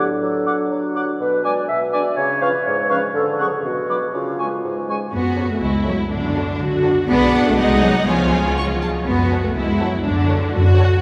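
Bathed in a wet cathedral reverb, this playful, whimsical film cue in a straight 2/4 has a quirky, mischievous air. A dark, distant clarinet, an airy flute with rolled-off highs and a roomy cor anglais weave second lines over a bassoon with a smooth top, while a French horn section holds mellow sustained chords in the background until near the end. At 5.1 seconds the lower strings enter with a clear viola section, a lush cello section and an up-front double bass section with portamento. At 5.4 seconds they are joined by a violin section singing the melody with soft-attack vibrato, as a close second violin section traces a counterline.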